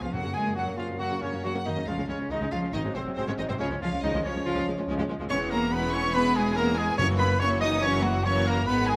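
In a quick, flexible 4/4 shaped by rubato, this graceful and lively classical-period movement for symphony orchestra is cut from a longer piece. A rich chamber violin section carries the melody with smooth, even vibrato. A pure, tongued silver concert flute sits in the distance on a second line, joined by a bright clarinet and a very quiet, focused second violin section. Beneath them a far-off viola section supplies accompaniment, a mellow French horn section holds sustained chords, and a roomy trumpet adds stabs from the background. Lush symphonic cellos and bowed chamber double basses share the bass, while hard-mallet timpani strike close and dry at 0.1 s and again at 7.0 s. Moderate scoring-stage reverb surrounds the orchestra as the harmony moves through F#, C#, G#7 and C#m7/E before arriving on F#7.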